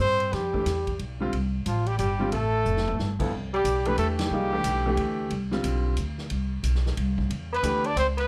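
A trumpet with vibrato and plate reverb carries the melody up front while a distant subtone tenor saxophone with scooped notes adds a second line and a woody pizzicato upright bass plays underneath, opening this spiritual, hypnotic modal jazz fragment at a swinging 181 BPM in 3/4. A clear grand piano and a roomy, distant big-band drum kit with a boomy kick and rolled-off top soon join, and the drum fill leads the shift from Fmaj9 to Cmaj9 at 3.3 s, followed by a band accent. The trumpet then drops out at 5.1 s and the saxophone at 5.2 s, and both return at 7.5 s.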